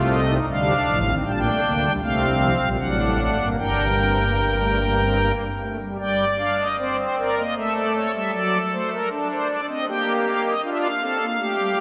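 A soft, shimmering pipe organ sits up front in a drenched cathedral acoustic, its 4.6-second reverb tail hanging in the vast space around every chord. This is a baroque-style four-part fugue in G minor, a serious and solemn passage cut from a longer piece, moving at 78 BPM in a straight 3/4. The organ plays alone throughout, using its string and celeste stops for a romantic voicing that spans from a deep G1 up to A5. The harmony circles the home key, passing through D minor, G minor colorings and dominant chords on A and D before settling back toward G minor and D minor. A second section begins at 6.0 seconds and carries the music to its close at 11.8 seconds, keeping the same grave, reverent character.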